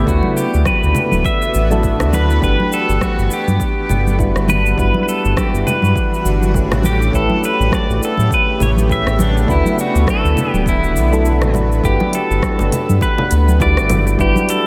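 A round, deep analog bass sits up front in this relaxed, smooth sunset chillout piece at 102 BPM with a light 16th-note swing, beneath a clean electric pedal steel melody with tape echo, soft mellow electric-piano-like synth keys, a shimmering, ethereal ambient pad in the background, a punchy electronic kick that drops out from 11.3 to 11.8 seconds, a deep house kit with smooth hats, and close, dry congas and bongos, all moving through D69, Gmaj9, Em9/G and A9 in a dreamy, reverb-soaked mix.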